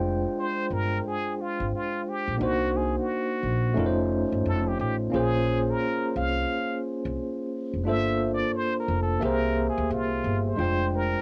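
Lightly reverberant and captured at home on cassette, this cool, nocturnal jazz-hop fragment cut from a longer piece sets a plunger-muted trumpet, entering at 0.4 seconds, soloing with a brilliant wah-wah edge over a clean tine electric piano tinged with tape character and a woody, thumpy pizzicato upright bass, all three up front in a swung hip hop groove moving through extended jazz chords.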